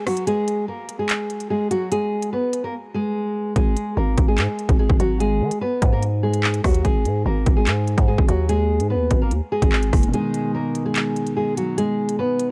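A fingerpicked, classical-style nylon-string guitar opens this dark, ominous drill excerpt through a low-pass filter, and the electronic kit joins almost at once with a hard-clipped kick, crisp hi-hats, handclaps and rim clicks at 146 BPM in a half-time feel. A growling, buzzy 808-style bass with a fast attack and decaying tail enters at 3.6 seconds and carries the low end until 10.1 seconds, when a mellow, filtered baby grand piano with long sustain enters as the harmony shifts from F#add9 toward G#m. All parts sit up front in a shadowy, digital ambience.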